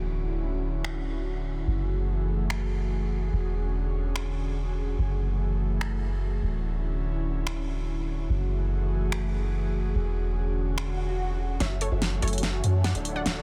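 An airy, breathy pad with a soft chorus shimmer and a touch of gritty 12-bit sampler texture opens this emotional, lush future bass piece in F# minor at 145 BPM, sitting in a half-time 4/4 feel. It is joined from the start by a deep, sine-like 808-style bass that sits up front, with long, mellow, decaying notes. The pad's slow-attack chords move through Dmaj9, F#m9 and E13, and at 0.8 seconds a layered big-room dance kit arrives with finger snaps, filtered hi-hats and a huge, softly clipped snare. A very quiet electronic swell and riser creeps in at 10.9 seconds, leading into a build-up at 11.6 seconds. There, a bright, punchy unison pluck melody with digital delay and a filter sweep enters alongside a thick, compressed supersaw riff with vibrato, tucked in the background beneath its own filter sweep, while the drums play a fill. The mix has light digital ambience and a dense, heavily limited modern finish, and the excerpt ends mid-build as part of a longer piece.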